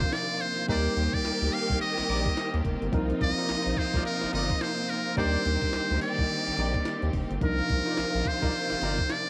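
A buzzy, metal-muted trumpet sits up front with the melody, its scooped notes riding over a punchy, bouncy new jack swing groove in C minor at 107 BPM, swung on the sixteenths and built on Cm11 and Ebmaj7. A gritty, pitched-up breakbeat kit with a thumpy kick, high-tuned snare, handclaps, hi-hat and tambourine drives it alongside a deep, round analog bass, while a clean tine electric piano and a focused, bowed string section fill in the chords. From 0.7 seconds a smooth horn section adds background stabs through tape echo and plate reverb, and the whole cut carries the soft grain of a home cassette recording in a lightly reverberant room.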